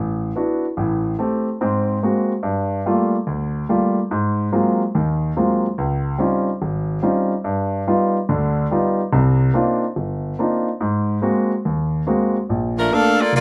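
Swinging and joyful, this jazz fragment moves at 143 BPM in a swung 4/4, with a warm, polished grand piano carrying the accompaniment up front from the start through rich extended chords such as D69, Dbmaj9#11 and Cm11. The piano rings with long sustain inside a moderate club reverb. At 12.8 s an edgy, close-miked saxophone section enters with the melody, its ensemble vibrato sitting up front alongside the piano, before the recording is cut off at 13.4 s.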